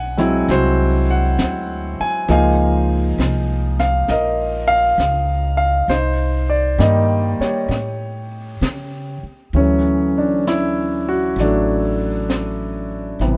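An up-front concert grand piano, natural and intimate with audible action noise, deep bass and long sustain, carries this tender jazz ballad excerpt through Ab7alt, Db6, Cm7 and A7 before arriving on Dmaj7 at 9.5 s. A woody, thumpy pizzicato upright bass on gut strings sits close beside it. A dark, smooth brush kit with a high-tuned snare and rolled-off top enters at 0.2 s, lower in the mix, playing brushed snare and hi-hat in a swung 4/4 under light reverb.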